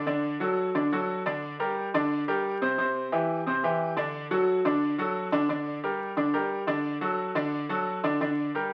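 A bright, brilliant concert grand piano plays alone and up front, its deep bass and present tone driving a danceable Latin groove at 177 BPM in a straight 4/4, in G harmonic minor. The short fragment, cut from a longer piece, moves through D, Gm and Cadd9 before settling back on Gm near 8.2 seconds. A wet studio reverb surrounds the piano, and the sound carries the crackle of a very old 78 rpm record.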